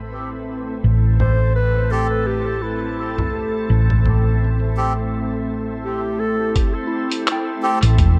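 A lightly swung sixteenth-note groove in 4/4 drives this short cut from a longer ambient dub piece, with muffled, pitched-down, lo-fi congas, finger snaps and hi-hat arriving at 1.2 s, all soaked in studio reverb and dub echo. From the start, a dark, round hollow-body electric bass sits up front beneath a calm, full-bodied organ-like pad of slow-attack sustained chords, its ensemble chorus and 12-bit sampler grit lending a bright yet gritty sheen. A mellow clarinet carries the melody in a classical solo style through dub echo, while a reedy, nasal melodica adds breathy stabs that sound boxed into a small room. At 6.6 s the harmony shifts from A minor to Am7 and a compressed, thumpy electronic kick pushes to the front. A soft FM synth bell then enters at 6.9 s with gentle decaying arpeggios, colored by chorus, phaser and echo, deepening the meditative mood under a light digital ambience.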